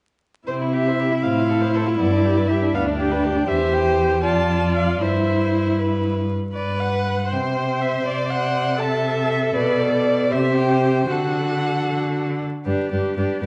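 A dark, softened recording with a faint vinyl crackle sits in a wet recital hall, its long reverb giving the strings a glowing halo. This is a lively, cheerful classical-period movement for string quartet, a short cut from a longer piece, moving in a quick 6/8 at 79 BPM counted in dotted quarters with a straight feel. The first violin carries the melody with expressive vibrato and portamento, sounding a touch distant, while the second violin spins a focused, smooth-topped second line beneath it. The viola fills in a rich, vibrato-laden accompaniment, and the cello anchors the bass with a full, up-front presence. Starting in C major, the harmony turns toward G major from 6.6 seconds, passing through chords such as D7/C and Bm7 before settling on G at 12.7 seconds, and all four players sound together from 0.5 to 13.5 seconds.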